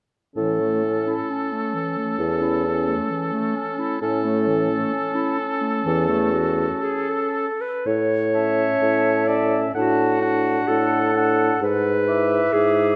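Classical wind quintet writing in a slow, tender romantic movement, this excerpt moves at 64 BPM in A major with a rubato feel, as a warm, vibrato-touched oboe sings a second line over a clear clarinet and a smooth-topped French horn in accompaniment, all resting on a mellow, up-front bassoon bass with light vibrato. At 8.3 s a pure, hollow silver flute enters with the melody, crisp in attack, set distant and shaded by vibrato, as the harmony passes from A to D/A and then E7/G#. A moderate concert hall reverb gives the ensemble a natural sense of space.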